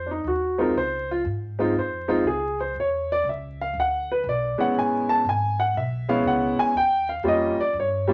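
A concert grand piano takes a solo from the very start of this swinging, cool jazz piano trio passage, its smooth, vintage tone sitting up front with deep bass and long sustain as it carries the melody from a rootless G#13 through C#maj7, E7(no3), Amaj9 and D#7. Beneath it, a pizzicato upright bass on steel strings adds a woody, growly, thumpy line, lower in the mix. Moderate studio reverb and a layer of vinyl crackle frame this brief 8.1-second cut from a longer piece.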